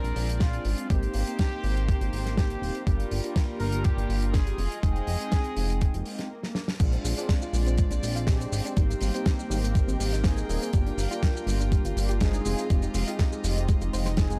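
A glossy, detuned chorused synth bass, a dry 70s drum kit with dark cymbals and shaker, sustained, brassy synth brass with chorus and tape echo, and a distant, floating violin section open this feel-good, groovy nu-disco excerpt, joined at 0.4 seconds by an overdriven, thumpy electronic kick that sits up front, with both the synth brass and violins pumping against the kick. A pop-style trumpet section carries the melody until 6.3 seconds, when the music stops briefly for a drum fill, while a background swell that entered at 6.0 seconds fills the gap. At 6.8 seconds the drop arrives with a soft, round pluck arpeggio, and the whole take has a gritty hardware character.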